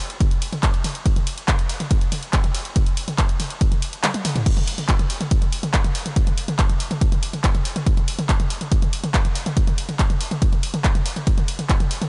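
A tape-warm electronic kick drum sits up front in this intense, hypnotic techno passage at 141 BPM in a straight 4/4, entering at 0.2 seconds and driving the groove until 11.8 seconds. Around it, an analog drum machine with a punchy character supplies crash and ride cymbals, handclaps, hi-hats and toms, with sidechain pumping on the hats, toms and cymbals. At 4.0 seconds the kick drops out for a brief drum fill before the beat returns at 4.5 seconds, resetting the same driving section. The digital ambience holds the top end below 11.0 kHz. This is a short cut taken from a longer track.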